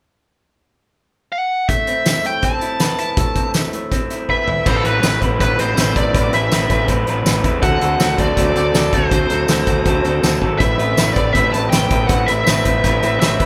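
A live-in-one-room sound with moderate large studio reverb carries this restless, cool indie rock excerpt in A dorian at 162 BPM, where a distorted bluesy lead guitar sings its melody from 1.3 seconds, a bright, twangy, slightly broken-up electric guitar through a small old amp and a loose drum kit with dark cymbals, fat snare, punchy kick and tambourine join at 1.7 seconds, and a fuzz-overdriven fingered bass enters at 4.7 seconds after a drum fill, over chords moving from Amadd9 to D7 and back.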